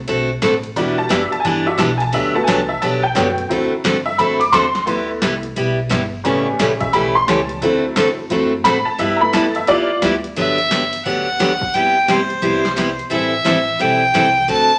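A swung 4/4 groove from a punchy analog drum machine, re-recorded in a small room and playing kick, snare, hi-hat and ride, drives this playful, down-home western swing excerpt, with a woody, thumpy pizzicato upright bass underneath and a bright, full-bodied picked dreadnought guitar up front. A jangly, detuned vintage upright piano takes a honky-tonk solo from 0.8 s to 10.0 s, and a clear, earthy fiddle with light vibrato carries the bowed melody from 10.4 s. The whole mix sits in a wet, large studio reverb.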